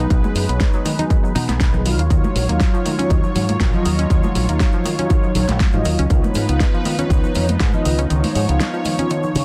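A sunny, groovy nu-disco passage cut from a longer piece opens on a bed of synths: mellow, brassy synth brass with a round, detuned sawtooth tone, chorus, vibrato, cassette-tape colour and delay. It sits over a lush, airy unison pad whose slow-attack chords carry chorus and a phaser. An analog pluck plays arpeggios in the background, its bright, wave-folded tone decaying through chorus and delay, while all three synths pump against the kick. Up front, a fingered electric bass with an envelope filter sounds punchy and direct. From 0.1 seconds a punchy, layered electronic kick drives the lightly swung groove alongside a pop kit with a fat snare and warm hi-hats, and maracas and congas in an acoustic room sound in the background. The harmony moves from B6 to D#m9 and then C#9, and the kick drops out at 8.1 seconds, leaving the rest of the band playing under light reverb in a dense, heavily limited modern mix.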